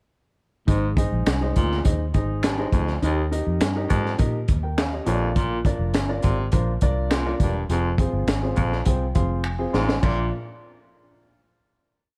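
A crunchy breakbeat drum kit sits up front in this short, joyful 1960s-style soul piece at 103 BPM in Bb mixolydian, its gritty, saturated sound pairing a punchy kick and high-tuned snare with dark cymbals in a backbeat soul groove. Beside it, a vintage muted fingered electric bass plays a round, amped, syncopated line with chromatic approach notes, while a woody, mellow upright piano supplies close-voiced rhythmic chords with grace notes and short fills. A clear baritone saxophone with vibrato delivers a low riff of pop-style punctuation, and human finger snaps sit in the background from 1.3 seconds. The single verse moves through Ab, Eb, Bb and Fm, with a drum fill at 9.4 seconds before everything settles on a final Bb chord at 10.0 seconds. The production is dry, dark and warm.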